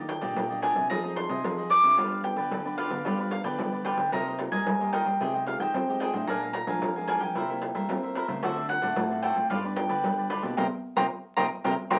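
A picked, woody mandolin leads up front, its doubled strings carrying a lively, bittersweet melody high above this samba and choro excerpt in a straight 4/4. Underneath, a crisp, picked cavaquinho lays down the accompaniment while a fingerpicked classical nylon-string guitar fills in softly in the background. A second nylon-string guitar, thumb-plucked, supplies the bass line. A jingly pandeiro played with soft hands keeps the percussion going from the first moments. The chords move through minor and dominant colours before the whole band hits an accent from 10.6 seconds to the end, and the sound carries the crackle of a very old 78 rpm record inside a small, reverberant room.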